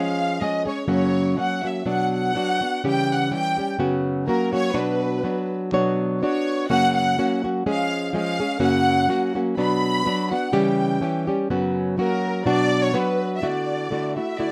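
This Mexican folk excerpt is festive and proud, moving at 125 BPM in 2/4 with a light swing on the eighth notes, set in B harmonic minor. A bowed violin section carries the melody throughout, its lush, expressive tone shaded with vibrato and placed up front. Beneath it, a fingerpicked flamenco guitar provides accompaniment from start to finish, acoustic and warm, sitting slightly louder than the strings. The harmony circles through B minor, F#, C#dim and suspended F# chords, repeating its opening phrase before a brief turn to Dadd9 at 13.4 seconds as the passage is cut off. Close, detailed microphones and a moderate studio reverb give the performance an intimate, polished sound.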